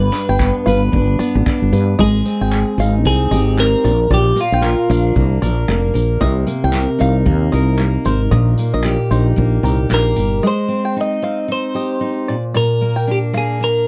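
A picked steel-string acoustic guitar, a fingerpicked banjo, a woody fretless electric bass and a clean, compressed twelve-string electric guitar open this tender, reflective acoustic pop piece together, with an unplugged drum kit joining a moment later. At 114 BPM in 4/4 with a gentle swing on the sixteenths, the music moves from G through Abmaj7, Bb, Cm7 and Eb/Bb. The warm, up-front acoustic guitar carries the accompaniment with audible finger squeak. The growly, round fretless bass sits forward in the mix, while the banjo adds twangy, percussive arpeggios high above, and the drums bring a punchy kick, handclaps, tambourine and crash played with bundle sticks. The bright twelve-string melody falls silent at 5.1 seconds and returns at 9.9, and after the bass and drums drop out around 10.4 seconds, the guitars and banjo close the passage over Abmaj7 and Bb. The sound is dry and close, like a 1970s studio recording with little reverb.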